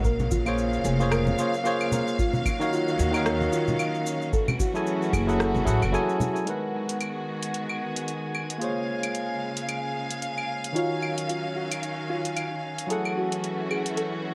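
A relaxed 4/4 groove at 112 BPM swings its sixteenths gently, driven at first by a deep analog electronic kick, a layered, overdriven deep house kit of hi-hat, rim click, cabasa and claves, and compressed, saturated congas played with soft hands. This sunset chillout piece, cut from a longer work, sits in G# dorian over a cycle of minor ninth chords. A bright, barky tine electric piano with delay plays up front throughout, beside a woody pizzicato upright bass, while a rich studio string section holds smooth, even bowed chords with vibrato. The kick, bass and congas fall away during the opening half, and the drum kit carries on. At 6.9 seconds a calm, glassy texture of drifting overtones enters quietly with a slow attack on a long sustained tone. A soft, round, dark pluck plays arpeggios in the background, drenched in lush chorus and delay; it pauses after the first half and returns at 10.8 seconds, all set in a moderate plate reverb with a warm, unhurried mood.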